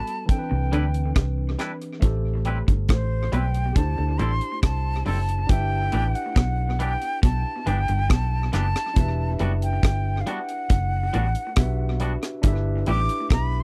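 Lovers rock reggae, sweet and smooth, in which a breathy, vibrato-rich silver flute carries the melody over a gritty, barky overdriven tine electric piano, both touched with tape echo, while an up-front reggae kit of tight kick, hi-hat and rim click sits with a round, punchy foam-muted bass, clean twangy guitar stabs and a lo-fi, slightly broken-up guitar riff with tremolo and tape echo tucked into the background, captured in a dry, close 1970s-style studio sound.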